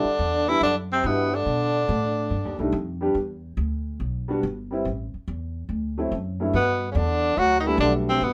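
Moody and late-night, this small-group swing and bop jazz moves at 142 BPM in E minor with a swung eighth-note feel. A tenor saxophone with light vibrato and a soft attack carries the melody up front over a bright, vintage-toned trombone second line; both horns play until 2.6 s and return near 6.5 s. Underneath, an intimate upright piano, boxy with audible action noise and long sustain, accompanies alongside a woody, thumpy pizzicato upright bass, all captured live in a small room with moderate reverb.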